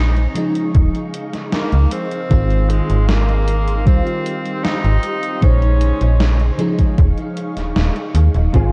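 Light reverb and a cassette-tape haze frame this dreamy, nostalgic vaporwave piece at 77 BPM, where a breathy, intimate tenor saxophone with tape echo carries the melody until 6.6 seconds over a lush FM electric piano with a pad layer, silky phased string-machine chords, an up-front snappy FM slap-like bass, an overdriven thumpy electronic kick, a gated 80s drum machine's hi-hat and gated-reverb snare, and a dark, clean electric guitar riff that enters at 8.5 seconds, as the harmony moves from Eb9sus4 through Ab6, a rootless Dbmaj9#11 and Bbm11 back to Eb9sus4.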